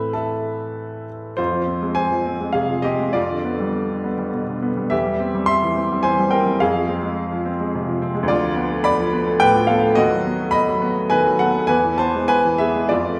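Classical romantic character piece for solo piano in F minor and 3/4, brooding and bittersweet, moving with rubato between 89 and 111 BPM. An intimate, up-front baby grand spans D2 to C6 with long sustain and audible action noise. Its chords drift from Am to Fm at 1.4 seconds and close on a B7/D# to E turn at 11.7 seconds, all within a wet recital hall reverb in this 13.2-second excerpt from a longer piece.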